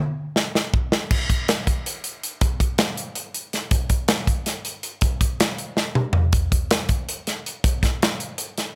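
Dry, polished and up front, this intricate, playful rock clip in 7/8 features an airy acoustic studio drum kit entering at 0.4 seconds with an opening fill, then moving through a straight groove of tight kick, medium-tuned snare, hi-hat, crash cymbal and toms, with another fill breaking in at 5.8 seconds.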